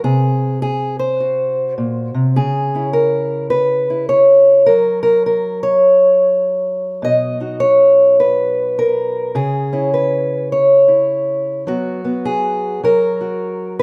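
Swung eighth notes roll through a relaxed 4/4 pulse, giving this short folk fragment a gentle, lilting gait. A single fingerpicked acoustic archtop guitar carries the whole piece from start to finish, placed up front and close to the ear. Its range runs from A#2 up to D#5, and its tone is warm. The harmony moves through G#7/B#, C#m, B and F#sus4, with chordless stretches at 4.7 and 12.8 seconds. A moderate large-room reverb and a dark production lend the guitar a soft, nostalgic glow over these 13.8 seconds, which are cut from a longer piece.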